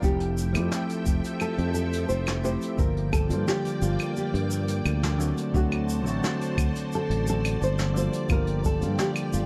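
A growly, up-front fretless electric bass anchors this blissful, relaxed sunset chillout excerpt, joined by a deep, tape-warm electronic kick that stops at 8.8 s. A dark, full-bodied nylon-string guitar carries the melody, thumb-plucked with audible finger squeak, while a bell-like tine electric piano accompanies; both carry digital delay over a silky, slow-attack string machine with ensemble chorus. Soft brushes on a medium-tuned snare, with hi-hat, claves and shaker, have a rolled-off top in a small room as the chords move from Fmaj9 through Gm7 and D7 to Gm7.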